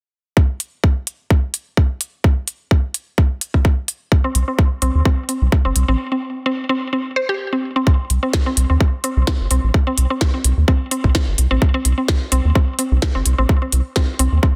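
Hypnotic and cool, this minimal techno piece opens on a tight, overdriven electronic kick and a clicky kit of tiny snare and hats with a swung feel, joined at about 4.2 seconds by a woody, round mallet-like synth pluck carrying the riff through chorus, phaser and delay, and by a rubbery, hollow square bass, both pumping under sidechain, with a break at 6.0 seconds before the second section takes over at 7.9 seconds, all in a dense, heavily limited master.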